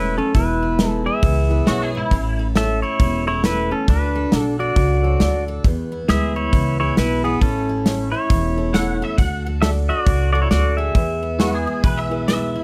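A clean pedal steel guitar carries the heartfelt, easygoing honky-tonk melody up front with fingerpicked slide lines and volume swells over a full-bodied jumbo acoustic guitar, a thumpy gut-string upright bass and a worn, slightly detuned upright piano tucked in the background, while a small-room country drum kit with a tight kick enters at 0.3 seconds to set a swung classic-country feel, and a bright, twangy electric guitar with ensemble chorus adds a second line briefly at 1.7 seconds and again from 8.7 seconds, all captured with close, detailed microphones and light reverb in this passage cut from a longer piece.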